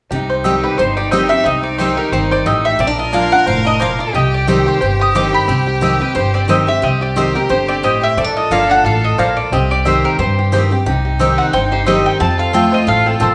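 Swung eighths at 56% drive this rustic, haunting bluegrass fragment at 179 BPM in C dorian, where a bright picked mandolin carries the melody from 0.6 s over mellow mandolin stabs, twangy fingerpicked banjo arpeggios, up-front, full-bodied steel-string acoustic guitar accompaniment, woody pizzicato upright bass and a clear, distant bowed fiddle with light vibrato on a second line, the band playing live together in one room bathed in wet large-studio reverb as the chords move between Cm and Bb before landing on F.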